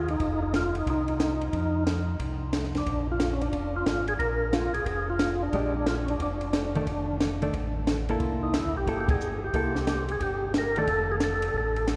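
Drenched in a cathedral-like reverb with a long tail, this greasy, soulful organ-trio fragment swings with a fat, percussive tonewheel organ carrying the melody through slow rotary speaker, light overdrive and chorus vibrato, while a second, piping, scooped organ holds down the bass. A compact cocktail kit sits up front with a high-tuned snare, punchy kick, hi-hat and ride. A dark, clean hollow-body jazz guitar adds compressed, fingered accompaniment from 5.5 seconds, and the band hits a shared accent at 9.0 seconds.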